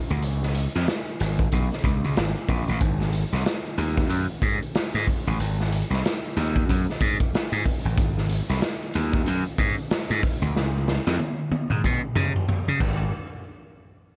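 Funk at 93 BPM in Ab mixolydian with a 60% swing on the sixteenths, this gritty, energetic excerpt from a longer piece pairs an overdriven, punchy slap bass, up front and ranging from Ab1 to Db3, with a raw garage drum kit of crash, hi-hat, kick, snare and toms that sounds saturated and dark in a bright stone room, carries 12-bit sampler grit, and rolls into a drum fill from 10.6 to 13.1 seconds, all under light reverb.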